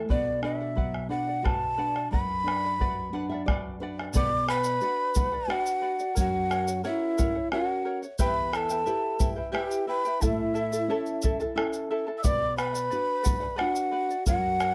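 Shimmering, fingerpicked charango and a bright nylon-string guitar open this wistful yet festive Andean folk excerpt in B minor at 89 BPM in 3/4, joined almost at once by a breathy, up-front large quena carrying the melody with crisp chiff and a deep, dark bombo, with the guitar adding a fill at 2.8 s before an airy pan flute with vibrato takes a second line and a grainy, compressed tube shaker enters at 4.1 s, the chords moving from Bm through F#, Em and A back to Bm in a dry, close 1970s-style studio sound with light reverb.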